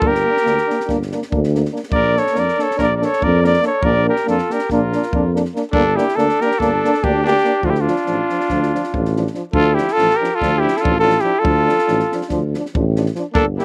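A Balkan brass band opens at once in a restless, bittersweet 9/8, with a warm, close-miked flugelhorn carrying the melody up front over a gritty, growling trumpet second line touched with light vibrato and a slapback echo. Two clear euphoniums sit in the background as accompaniment, one punchy and distant, the other soft in attack, while a mellow tuba anchors the bass and a compact cocktail kit adds a dark, punchy kick and a high-tuned snare. The harmony moves through Gm, Bb and Dm, and the dry outdoor sound keeps every horn close and plain across this 13.6-second cut from a longer piece.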